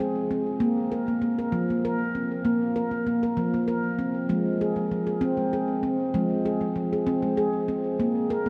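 A solo handpan, up front with a ringing, nitrided-steel mellowness under soft fingertips, carries this hypnotic, gentle fragment of meditative world music in a straight 6/8, its delay-touched tones drifting through the vast, echoing space of a huge ambient reverb over 8.5 seconds cut from a longer piece.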